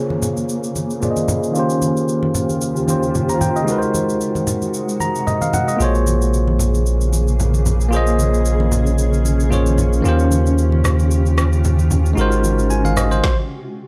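Deep and late-night in mood, this amapiano excerpt moves at 113 BPM in 4/4 with a light swing on the sixteenths, set in Bb minor and cycling through Bbm7, Eb13 and Ab7. A bell-like tine electric piano sits up front with a bright, clean accompaniment through a low-pass filter, adding a fill around 4.7 seconds. Beneath it, a granular cloud pad holds sustained chords with a blurred, evolving, detuned character, its own reverb and sidechain pumping, while a faint downlifter opens the piece. Bright, low-tuned congas with a thin skin are struck with hard hands, joined by a deep house drum kit of punchy kick, woody snare, rim click and shaker that sounds re-recorded in a small room. At 5.8 seconds a punchy sine sub bass arrives with a pitch-drop attack, and a filter sweep runs across the whole passage before a stop at 13.2 seconds, all captured as a dry, gritty hardware recording in a digital ambience.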